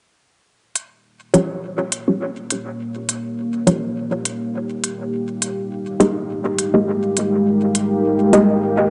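Ambient dub at 103 BPM in 4/4, with a light swing on the sixteenths, this short cut from a longer piece feels meditative and deep. A crisp electronic hi-hat opens at 0.8 seconds, its tape-warm tone re-recorded in a large room. Filtered dub chord stabs arrive at 1.3 seconds, muted and mellow with a fast attack and short decay, colored by phaser and dub echo while a filter sweep runs across them. From 1.8 seconds a dark, detuned sawtooth pad with a sub octave fades in under chorus and its own reverb, holding long sustained chords up front. The harmony moves from Eb9 to Fm11 at 5.1 seconds, all set in a wet echo chamber with a soft, rounded top end.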